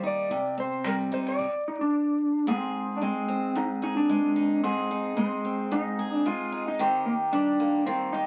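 Acoustic pop at 111 BPM with a light 16th-note swing and a heartfelt, carefree mood, cut from a longer piece, where a dark, slightly broken-up, compressed electric slide guitar carries the melody up front over a picked steel-string acoustic guitar with audible finger squeak, while a very quiet, round, foam-muted electric bass and a dry compact cocktail kit of punchy kick, dark crash cymbal, finger snaps and shaker drop out by 1.5 s, leaving the two guitars to move from Cm into Ab at 2.5 s and Eb at 6.8 s, all under moderate studio reverb and the crackle of a very old 78 rpm record.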